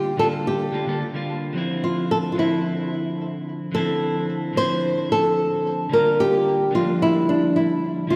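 A fingerpicked flamenco guitar carries the melody up front, its acoustic tone touched with delay, in this smooth, relaxed chillout fragment cut from a longer piece. A clean, picked electric guitar, also up front, supplies warm accompaniment colored by tape echo, moving from Gm7 to Dm9 and returning to Gm7 at 5.9 seconds. Both guitars play throughout, bathed in a lush hall reverb within a rough home demo mix.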